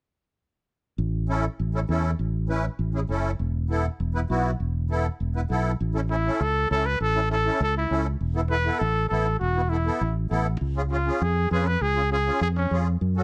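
Closely miked and dry, this festive, danceable Latin excerpt in A major moves at a brisk 200 BPM, with a round, dark fingered electric bass entering at 1.0 seconds and a reedy, shimmering musette accordion filling in the accompaniment just after. At 6.1 seconds a breathy trumpet takes the solo melody up front, its whispered, intimate pop-style tone colored by light vibrato, scooped notes and a soft attack. The harmony moves between A and Esus4 before reaching C# near the end of this cut from a longer piece.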